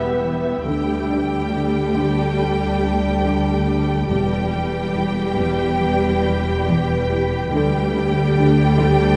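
A rich, focused violin section carries a vibrato-laden melody over darker portamento violins, warm violas, two cello sections and double basses, with mellow French horn chords, an airy wind-like tuned noise layer and a barely audible piano through the first 4.1 seconds, in this uneasy, ominous suspense film cue at 70 BPM that moves between Em and Dsus4 in a wet concert-hall reverb.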